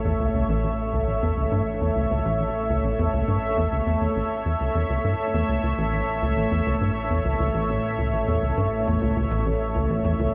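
Expansive and mysterious, this excerpt of ambient, sequencer-driven space music sits in a huge, wet reverb. A tight, punchy sequencer bass riff drives from the front, its dark sawtooth and square tones shaped by a plucked filter, ring modulation, ensemble chorus and tape echo, while a bright, resonant pad holds detuned, evolving chords with a slow attack, a filter swell and chorus. A fat, wave-folded analog bass stays in the background with tube saturation, and a bubbling texture of random filter steps floats high above through its own chorus and reverb.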